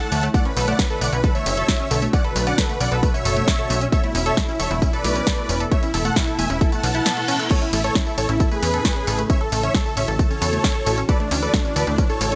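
A huge, detuned supersaw lead with dub echo soars up front over a shimmering, ethereal pad, a tight sequenced arpeggio synth with delay, a plucky analog bass, a punchy electronic kick and a layered house kit, all but the kick pumping to the sidechain (the kit through its hats, cymbals and percussion) in this euphoric 134 BPM uplifting trance excerpt in A major, moving through Bm, Esus4, A and Dsus2 in light reverb, with a reverse cymbal in the background at 6.8 seconds.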